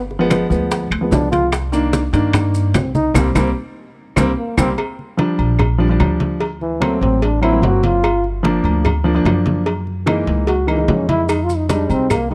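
A dry, close 1970s-style studio sound frames this driving, sophisticated Afro-Cuban jazz fragment, where a punchy trombone with light vibrato solos up front over thumpy gut-string pizzicato upright bass and a dark baby grand piano with audible action noise, while damped congas, high-tuned bongos and cowbell, ringing timbales and agogo bells, woody claves and grainy maracas, which drop out after 4.7 seconds and return at 11.3, drive the rhythm beneath a band accent from 3.2 seconds.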